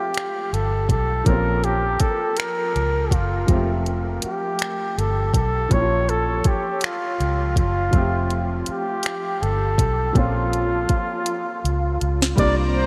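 Slow, sensual R&B in 6/8 at 54 BPM, drifting between Fmaj9 and B-flat minor colours in a dreamy mix soaked in a huge reverb, cut from a longer piece. A breathy, whispered flugelhorn carries the melody up front with light vibrato and a diffuse ambient delay, over a grand piano with short sustain, a round, foam-muted electric bass, and a tape-toned produced kit of soft kick, sharp snare, hi-hat and finger snaps. A drum fill arrives at 11.3 seconds, and a lush bowed string section enters only at 12.4 seconds.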